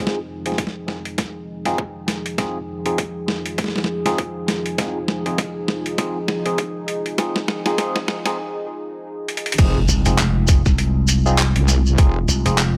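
Glitch hop at 100 BPM with a swung 16th-note feel in F minor, this playful, gritty excerpt builds over a moody, detuned analog pad on an Fm7 chord, barky overdriven tine electric piano stabs through a combo amp with phaser, delay and a filter sweep, a barely audible warbling ambient pad, a compressed, pitched-down boom bap sampler kit with a high-tuned snare, handclaps, hi-hat and crash, and a tight, up-front layered electronic kick, with drum fills and a break at 8.4 seconds before the drop at 9.6 seconds brings in a heavy, saturated sawtooth wobble bass, a grainy shekere, a background impact and, at 9.9 seconds, a growly, punchy slap bass with an envelope filter, while both pad and piano pump against the sidechain.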